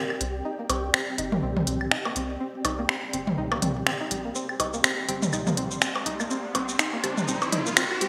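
A cool, sparse minimal techno build-up opens on a twangy, string-like resonator pluck riff carrying a filter sweep, with chorus, phaser and delay. Behind it sit a mellow, flickering, grainy texture and a blurred, evolving granular cloud pad, both set back in their own reverb. A crisp, tape-toned garage drum kit of finger snaps, hi-hat and shaker sits up front with a swung feel, joined by overdriven electronic claves, percussion blips and toms in gated reverb, while a rubbery, hollow square bass bounces underneath. A detuned, digital wavetable chord stab slips in quietly at 5.1 seconds with subtle chorus and delay, and an electronic riser enters at 5.4 seconds to push the build onward. The cut is drenched in a lush digital hall ambience with a bright, high-passed 1980s-style sheen.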